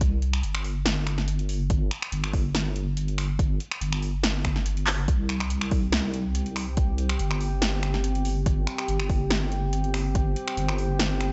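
An overdriven, deep electronic kick drum drives this cavernous, brooding half-time deep dubstep excerpt until 10.2 s. It sits up front beside a dark, detuned wobble bass with a chorus effect and an overdriven drum kit of finger snaps, handclaps, metallic hi-hats and a punchy snare, which plays a fill at 4.9 s. A moody, evolving ambient pad of sustained chords swells in through its slow attack at 5.8 s, and the mix is dry and dull-topped.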